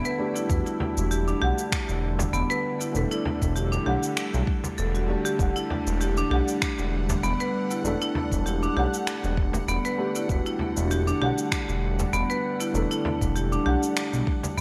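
A bright, 1980s-style digital sheen and a moderate plate reverb frame this earthy, warm slice of organic downtempo at 98 BPM in E minor, swinging gently on a single Em7 chord and cut from a longer piece. Up front, hard-mallet marimba arpeggios ring percussive and bright over a smooth, detuned synth bass, while a felt-muted upright piano adds mellow, intimate accompaniment through chorus, delay and sidechain pumping, and a tense, string-like drone sustains chords with phaser, vibrato and pumping of its own. Electronic shaker and finger snaps in gated reverb tick from the opening moments, a deep electronic kick enters at 0.5 seconds, and a soft-handed frame drum follows from 0.8 seconds.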